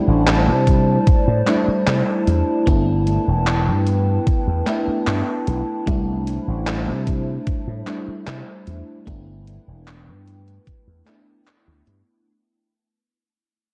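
A lush FM electric piano with a soft pad layer, treated with phaser, subtle chorus and analog delay, opens this dreamy, nostalgic vaporwave excerpt alongside a warbling, lo-fi tape-like pad that holds dark sustained chords as the harmony alternates between C6/9 and G6/9. A bright, punchy slap bass through an envelope filter sits up front from 0.1 seconds. A detuned 8-bit drum machine of handclaps and hi-hat and a thumpy electronic kick entering at 0.7 seconds, both sampler-style and re-recorded in a large room, complete a cassette-toned mix that is soaked in plate reverb and fades out across its entire length.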